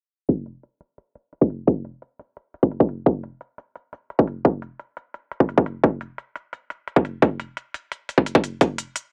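A punchy, up-front electronic kick and crisp, layered hi-hats enter together at 0.3 seconds, setting a tense, dark mood for this technical drum and bass passage at 173 BPM in a straight 4/4. The tape-warm kick carries a high-pass filter and sits well forward, while the hats stay lower in the mix. A filter sweep runs through the whole section under an overall low-pass filter with little reverb, and this cut from a longer piece closes around 9 seconds.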